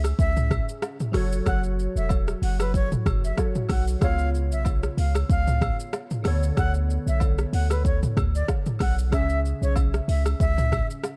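Dark, dry production frames this hypnotic, mellow afrobeats excerpt at 94 BPM with a light sixteenth-note swing, where a breathy, brilliant concert flute with vibrato and digital delay carries the melody over glassy, detuned digital keys with chorus, a boomy 808-style bass up front, an overdriven deep house drum kit with deep kick, metallic hats, rim click, shaker and toms, and agogo bells and woodblock tucked in the background, all moving through C#m, F#m, C#7 and Bm7 before returning to C#m at 9.1 seconds.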